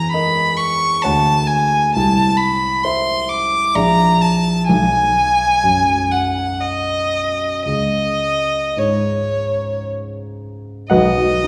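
A clear, smooth violin and a dark grand piano begin together at 0.0 s in this dreamy, pastoral impressionist classical duo, set in B major in a rubato 3/4 at roughly 54-67 BPM. The single bowed violin carries the melody between C#5 and D6, its tone even and touched with vibrato, with a slightly distant quality though it sits up front. The piano accompanies from A#1 up to F#5, mellow and short in sustain, sitting a little beneath the violin. The harmony drifts from Emaj7(no3) through Dmaj7#11, C and A#maj7#11 before settling on B, passing through C#sus2 and arriving back on B at 10.9 s. A wet recital hall reverb places the listener further back in the room, and the passage, cut from a longer piece, ends at 11.5 s.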